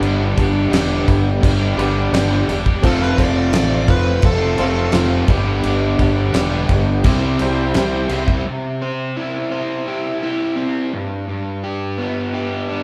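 A swaggering classic rock groove at 85 BPM in straight 4/4 opens with the band together: a damped 70s drum kit with a fat snare, tight kick and dark cymbals, and a fuzz fingered electric bass that sounds round and overdriven. Three overdriven electric guitars carry the riff over a G, F, G, C progression: a bright, cranked stack guitar, a crunchy overdriven guitar, and a double-tracked semi-hollow guitar set in the background. A detuned, jangly honky-tonk upright piano with a woody, vintage character comps behind them and plays a fill at 1.4 seconds. At 2.9 seconds a bluesy, distorted lead guitar with a darker tone adds a brief second line. The drums, bass, piano and semi-hollow guitar stop at 8.4 seconds, leaving the stack and crunchy guitars to carry the next section back to G. The band sounds as if it is playing live in one room, with a large, wet studio reverb, and the clip is cut from a longer piece.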